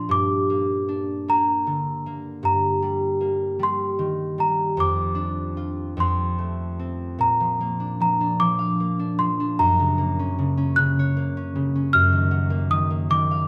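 A small celesta, bell-like and sweet with hard felt hammers, carries the melody up front over a ringing, fingerpicked concert harp in this gentle, innocent children's lullaby in Bb major, drifting in rubato 6/8 at 51 dotted-quarter beats per minute through a wet recital hall reverb, its harmony moving from G minor to Bb at 7.2 s and then on to Gb in this fragment of a longer piece.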